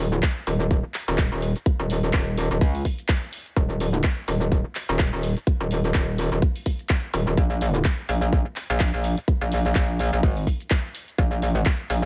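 This dry excerpt of bass house sits close and upfront, with little room sound around its parts. At 126 BPM in 4/4 with a 56% swing on the sixteenths, the groove feels gritty and swaggering from the first moment. A metallic wobble bass stands up front, its FM tone bright and aggressive with a fast attack and sustained, saturated body, thickened by chorus and tube saturation and pumping against the sidechain as it moves between Eb1 and Db2. A tight, layered electronic kick drum sits up front from 0.2 seconds, touched with studio reverb. Beneath them, a garage drum kit of handclaps, hi-hat and shaker sits lower in the mix, also carrying a studio reverb.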